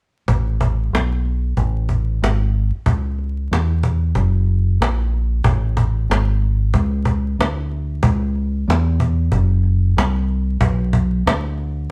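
Smooth and warm, this short jazz-hop clip from a longer hip hop piece rides a swung sixteenth-note groove, with a deep, dark, round fingered electric bass and a woody cajon with faint snares both placed up front from 0.3 seconds. The bass comes across direct and amped, while the cajon sounds acoustic, vintage and band-limited. The band plays live in one room under light reverb and a layer of vinyl crackle, and the music moves into a new section at 5.4 seconds.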